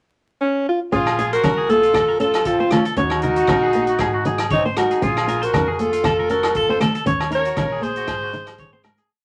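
Vinyl crackle and a moderate club reverb frame this short, danceable highlife piece in Bb minor at 117 BPM with a light swing: a scooped, vibrato-rich alto saxophone opens alone at 0.4 seconds with a jazzy, motif-based melody up front, then from 0.9 seconds a clear, punchy trumpet adds a harmony line mostly in thirds, a fingerpicked flamenco guitar and a bright, twangy clean electric guitar play ostinatos, a woody, growly pizzicato upright bass carries a dotted figure, a vintage kit with a punchy kick drives the groove, and soft, low-tuned congas sit in the background, with ringing agogo bells joining soon after, before the fade-out from 7.1 seconds.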